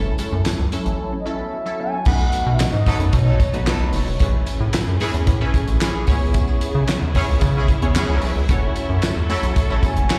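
A straight 4/4 groove at 112 BPM drives this slick, funky slice of early-eighties boogie funk, with a damped 70s drum kit up front, its tight kick, fat snare, dark cymbals, hi-hat, crash and handclaps sounding dry and rolled-off, while a jingly tambourine sits in the background. A rubbery, hollow square bass bounces beneath with a nasal filter pluck, and a punchy, detuned sawtooth polysynth comp with a moving notch and chorus fills out the harmony over F#m7, B7, Amaj9 and C#m7. A dark, clean electric guitar riff appears only briefly in the background at the start, and a round, warbling horn-like synth lead enters at 1.2 seconds, soaked in chorus, plate reverb and tape echo, returning just before the cut. From 2.1 seconds a lush, bowed string section adds distant sustained chords, and at 2.9 seconds a roomy horn section with light vibrato joins with a second line. The whole band comes across as a live gig heard through the venue's PA, carrying a light recital-hall reverb in this short section of a longer piece.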